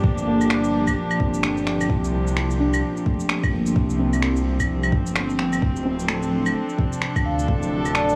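Melancholic and rainy, this future garage fragment swings gently over Gm7 and Dm7 chords, driven by a soft, up-front electronic kick and tape-warm shaker, claves and finger snaps re-recorded in a small room. Muted, felt-like synth keys with chorus and tape echo, a dark, nasal chamber string section with a reedy gut-string tone, and a menacing, detuned saw bass all pump with sidechain, while vinyl crackle and digital ambience settle around them. At 7.3 seconds a mellow vibraphone played with soft mallets slips in from the background, its ringing tone roughened by 12-bit sampler grit and dub echo.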